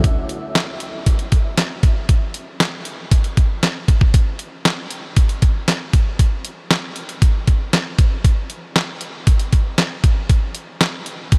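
A detuned 8-bit digital drum machine carries this short funk excerpt on its own from 0.0 to 11.4 seconds, sitting up front in the mix with handclaps, hi-hat, kick drum and snare drum. Its electronic, sampler-style character gives the kit a lo-fi grit, while a tape-warm tone softens the digital edges. The thumpy kick anchors a straight 4/4 groove, and the medium-tuned snare and claps add snap on top. A light reverb surrounds the beat, lending it a late-night, funky mood.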